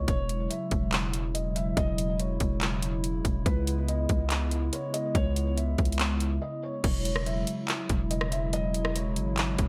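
A half-time trap beat at 142 BPM drives this dreamy, floating excerpt of atmospheric cloud-rap in E major, its kit of hard-clipped kick, metallic hi-hats, handclaps, rim clicks and crash cymbal sitting up front under gated reverb, with a long, deep sine 808 bass beneath it. A felt-muted upright piano carries an intimate, dark melody between B4 and E5, its audible action noise and mellow tone dressed in lush chorus, low-pass filtering and delay, while a hollow, flute-like pad holds detuned sustained chords that pump against the sidechain. The chords move from E69 to C#m7 and back to E69 at 6.8 seconds after a brief break, all framed by bright 1980s-style digital ambience.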